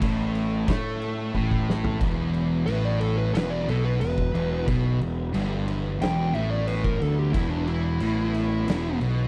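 A growly, overdriven fingered bass sits up front in this heavy, hypnotic stoner and doom metal excerpt at 90 BPM in E minor, joined by two picked fuzz guitars churning the riff in the background, a double-tracked tight distorted guitar that drops out at 2.0 seconds, and an oversized low-tuned kit with a fat snare and boomy kick that plays a fill just before that point. From 2.7 seconds a dark fuzz lead guitar with slapback echo takes a solo over the Em chord, while a very quiet, reedy tonewheel organ holds sustained chords through a slow rotary speaker. The sound is dry and close, like a 1970s studio.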